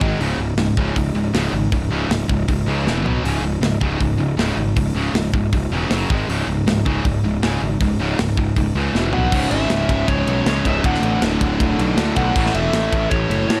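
A dark, dry production puts a saturated, gritty metal drum kit with a tight kick and rolled-off top, along with a growly, fuzzed electric bass, up front in this relentless, aggressive heavy metal excerpt, while a distorted electric guitar and a high-gain distorted guitar drive bright riffs in the background. Short drum fills at 2.9 and 8.9 seconds mark the phrases. At 9.1 seconds a high-gain lead guitar enters with a melody coloured by digital delay, and moments later a very quiet, double-tracked overdriven electric guitar adds another riff as the harmony moves through C# minor, D and A.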